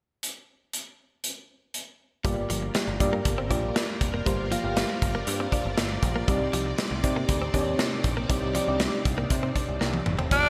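1980s-style pop with a moody, urgent feel, opening on a punchy, gated-reverb studio drum kit alone before a round, warbling FM electric piano, a shimmering string machine of violins, a clean, compressed electric guitar riff set in the background and a bright, picked electric bass all arrive at 2.2 seconds over Gm7 and Cmadd9 chords, leading to a drum fill at 9.8 seconds and a final raspy, gritty tenor saxophone note up front at 10.3 seconds, all in a lush hall reverb with bright digital production.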